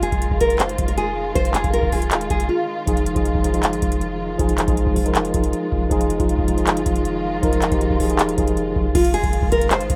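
Hip hop in a trap style, this dark, eerie piece runs at 158 BPM in F minor with a half-time feel, opening on an Fm7 chord and cut from a longer work. A full-bodied, fingerpicked nylon-string guitar carries the melody up front, its deep classical tone wrapped in plate reverb, while a distant, woody string section sustains lush bowed chords with vibrato underneath. A booming, dry analog drum machine sits forward with a deep kick, metallic hi-hats, handclaps and crash cymbal, and a clean, sine-like 808-style bass with a fast attack and decaying boom rumbles in the background. The drums drop out briefly from 2.5 to 2.9 seconds, and at 2.9 seconds the guitar gives way to a mellow tine electric piano heard through its built-in speakers, until the guitar returns at 8.9 seconds for a new section. The rough home demo mix carries light reverb.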